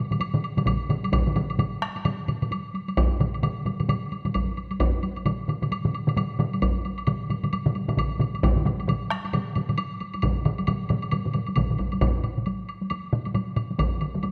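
A set of solo taiko drums struck with hard sticks sits up front in a live room, entering at 0.7 s and carrying this driving, powerful passage of Japanese traditional taiko ensemble music cut from a longer piece. Two more solo taiko drums played with heavy sticks sound from the very start, one close and dry, the other in a small room, while a heavy-sticked taiko ensemble rumbles close but in the background. A woody, close woodblock runs through the whole piece beneath the drums. The groove sits in 4/4 with a 60% swing on the sixteenths and speeds up from beginning to end, shifting into a new section at 12.0 s. A moderate scoring-stage reverb gives the acoustic drums a broad, resonant space.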